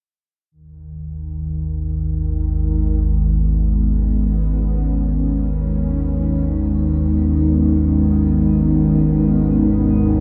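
Dark ambient drone in G# minor, moving at a glacial 48 BPM in 4/4 with an ominous, dark mood, taken from a longer piece. A sweeping resonant pad enters at 0.5 seconds, holding sustained G#m chords in the midrange with a detuned, warbling, vintage sawtooth character, dressed in lush chorus and shimmer reverb. Just after, at 0.9 seconds, an analog drone settles into the low register, its mellow, slowly evolving tone built from sawtooth and pulse waves with pulse-width modulation, detuning and chorus. A filter sweep moves across the synth drone throughout, giving the sound a restless, shifting quality. Both parts sit up front with slow attacks and long releases, bathed in a cavernous cathedral reverb that lingers for nearly seven seconds.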